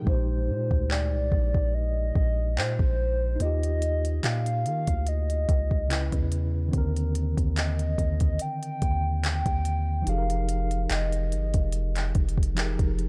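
Contemporary R&B with a longing, moody feel, where a hollow, woody clarinet-like synth lead with chorus and vibrato sings over a mellow tine electric piano, a deep, sine-toned 808-style bass with long decaying notes, and an up-front electronic drum kit of soft kick, crisp hi-hat and handclaps, all set in a dark digital ambience through chords from Bb13sus4 to Fm11 in this brief cut from a longer piece.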